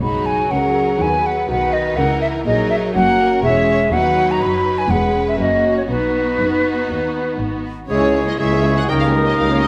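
This is a quick, spirited classical-period movement for symphony orchestra in B major at 122 BPM, heard as a short cut from a longer piece. A lush, distant violin section carries the melody with vibrato, while a second violin section sits in the background and an airy, up-front silver flute adds its own second line above. Violas supply smooth-topped accompaniment, mellow French horns hold soft-attacked sustained chords, and the bass is shared by focused double basses and close, expressive cellos that slide with portamento. At 7.9 s the harmony turns toward C#m, and a clear oboe, a dark clarinet and a mellow bassoon join for the closing stretch. A moderate recital hall reverb places the whole ensemble in a moderately reverberant space.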